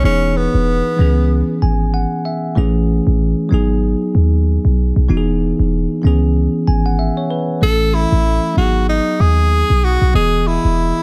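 A breathy, close-miked tenor saxophone with jazz-style vibrato and a delay on its subtone voice carries the melody at 0.0 and again from 7.6 seconds in this joyful, breezy afrobeats excerpt at 95 BPM in E major, over a bright, bell-like tine electric piano that plays seventh-chord accompaniment and fills, and a deep, boomy 808-style bass with a dark, sine-like tone, all set in a studio reverb.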